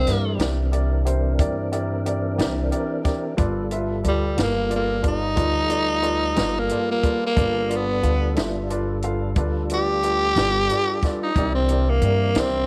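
A raspy, growling tenor saxophone solos up front through this rollicking, soulful slow-blues excerpt in 12/8 at 60 BPM. A clear tonewheel organ with chorus vibrato, key click and slow rotary speaker holds sustained chords, while a woody, polished upright piano adds accompaniment. A thumpy pizzicato upright bass and a compact cocktail drum kit, with its punchy kick, high-tuned snare and hi-hat, sit close in a light reverb as the harmony moves from C9 to G9 and returns to C9 at 11.4 seconds.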